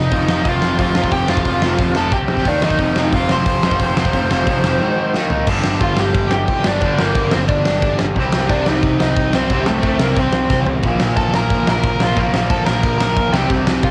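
A straight, driving 4/4 pulse at 179 BPM powers this urgent, raw punk rock excerpt in G minor, where a punchy, up-front rock kit with a fat snare and crash, hi-hat, toms and fills near 5.1 and 10.5 seconds backs a dark, bluesy distorted lead guitar melody, a bright crunchy guitar riff with a cassette-tape tinge, a very quiet, dark sludgy guitar riff, and a fuzzy overdriven bass sitting in the background, all captured as a home cassette recording with light reverb and studio ambience as the power-chord riff shifts to Gm and Cm harmony after 5.5 seconds.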